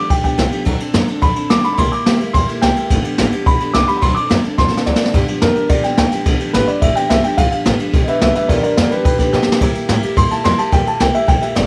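Rowdy and retro, this rockabilly excerpt from a longer piece charges along at 215 BPM in a straight 4/4, sitting in G mixolydian over a loop of G7, D7 and C7 chords. A dark, mellow upright piano carries the melody with a boxy, woody character and a slapback echo. A bright, full-bodied picked steel-string acoustic guitar fills in the accompaniment beneath it. Down low, a pizzicato upright bass with gut strings gives a thumpy foundation. A jazz kit played with brushes sits up front, with a punchy kick, medium-tuned snare and dark ride cymbal in a small, roomy space. A drum fill at 4.6 seconds leads into a piano solo from 5.1 seconds to the end, with another fill at 9.3 seconds, all under light reverb.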